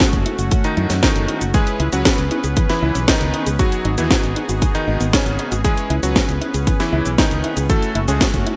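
A straight groove from a punchy electronic kick and an up-front house kit, with its cracking gated-reverb snare, hi-hat and cabasa, drives this melodramatic, bittersweet italo disco excerpt, underpinned by a fingered electric bass that enters at 0.1 seconds. A bright, clangy electric grand piano with vintage sampler grit and digital delay carries the melody, while fat, detuned analog synth brass stabs and a dark, round pluck playing chorused arpeggios in the background fill out the minor-seventh chords. The bright 1980s-style digital production is finished with light reverb and digital ambience.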